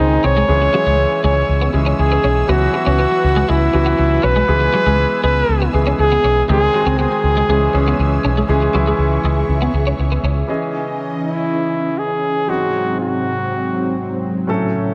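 This dramatic, urgent pop excerpt in C# minor moves at 120 BPM in a straight 4/4 and opens with the full ensemble at once. A punchy, smooth-topped flugelhorn carries the melody up front, touched with delay and a light vibrato. Beneath it, a clear concert grand piano with audible action noise, deep bass and long sustain lends an intimate, polished accompaniment. A vintage string machine voiced as cellos holds mellow, sawtooth chords with a slow attack, long release and ensemble chorus, while a bright, compressed twelve-string electric guitar plays a picked riff, also with ensemble chorus, over a woody fretless bass that sits up front with a growly, round, hollow-body tone. The guitar stops at 10.3 seconds and the bass at 10.4, leaving piano and strings until the flugelhorn returns at 11.2 seconds as the harmony moves from C#madd9 to G#7, all set in a light, small room reverb.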